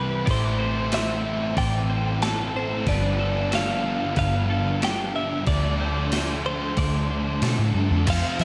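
Blissful and dreamy, this short cut of shoegaze-leaning dream-pop rock drifts over Am7, G7 and Dm7, led by a bright, twangy direct-recorded clean guitar melody with tape echo. A shimmering twelve-string electric guitar picks arpeggios through ensemble chorus and tape echo, while biting and crunchy overdriven guitars and a dark fuzz guitar bathed in lush chorus stack their riffs in the background, over a round, punchy, foam-muted vintage bass. At 0.3 seconds a gated 80s drum machine joins with a thumpy kick, overdriven gated-reverb snare, hi-hat and crash, all soaked in a lush hall reverb.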